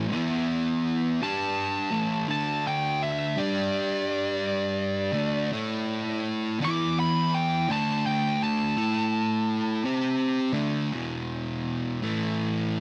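A double-tracked, compressed fuzz guitar riff sits up front from the opening of this heavy, ominous metal excerpt with a slow, swung feel, and at 1.2 seconds a dark, distorted fuzz lead guitar with digital delay carries a high melody until 10.5 seconds, all in a dry, dark and warm mix.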